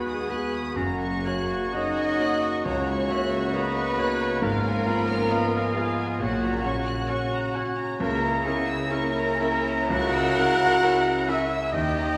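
A brooding, passionate romantic movement for piano and orchestra, cut from a longer piece, opens with an up-front concert grand carrying the melody with deep bass and long sustain, together with a lush, distant violin section singing high above it, a second, more intense violin line in the background, airy, hollow flutes, a solo clarinet, a warm solo oboe, very quiet violas, dark sustained French horn and trombone chords and punchy trumpet stabs, before bowed cellos and double basses bring in the bass line at 0.8 s, the music flowing in a rubato 4/4 at 66 BPM inside a wet scoring-stage reverb.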